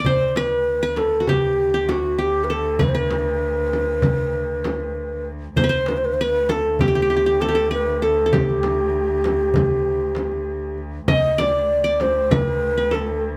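A light reverb surrounds this short cut from a longer Turkish makam ensemble piece in D makam hicaz, tuned to A4 = 441 Hz, moving at 196 BPM in eighths through a straight 9/8 with a stately, warm mood. Up front, a breathy, mellow ney carries the melody from 0.1 seconds, its reed-cane tone straight and tongued, with rolled-off highs, ranging from F#4 to Eb5. Beneath it, a plectrum-plucked qanun with triple strings and a bright-edged acoustic sound plays a second line across the same range. A dark, woody cello, bowed by one player with vibrato, holds a distant drone on D2 throughout. The percussion pairs a crisp metal-shell darbuka in a live room with a deep, large frame drum sitting in the background of a small room, both running until about 13 seconds.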